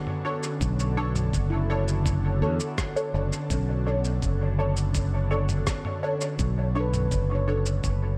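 Hazy and deep, this short ambient dub cut rests on a single Bm9 chord, with an airy, breathy pad holding sustained chords under chorus and phaser while a dark, ringing handpan plays meditative arpeggios in the background through dub echo. Filtered dub chord stabs, muted and plucky, enter at 0.2 seconds with phaser, ensemble chorus and echo, over a lo-fi sampler-style kit of cabasa, rim click and toms that sounds pitched down, muffled and overdriven. At 0.6 seconds a fingered electric bass arrives up front alongside a thumpy, compressed electronic kick drum, all set in light reverb.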